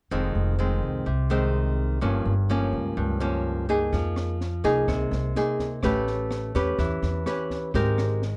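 A fingerpicked nylon-string guitar with a small, up-front, aged-string tone opens this smooth, intimate bossa nova fragment, joined from the start by a pizzicato upright bass that sounds woody and growly. At 3.9 seconds an open jazz kit enters with rim clicks, a high-tuned snare and a boomy kick, its dark, small-room character sitting low beneath the strings. The dry, dark production keeps the chords moving from Fm7 through Gm7b5, A9 and Abmaj9 close and hushed.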